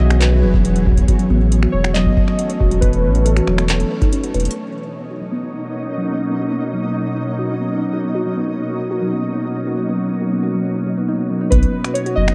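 A round, deep sub bass and a deep electronic kick anchor this wistful, playful IDM excerpt, as warbly lo-fi synth keys carry a detuned, chorused melody with digital delay over a glassy FM pad, a ringing harp-like pluck spins arpeggios, and a booming analog drum machine adds finger snaps, handclaps and metallic hats, until a break at 4.1 seconds drops the beat and a filter sweep moves over the pluck while a flickering grainy texture glimmers in the background, before bass, drums and keys return at 11.5 seconds inside a dark production bathed in huge ambient reverb.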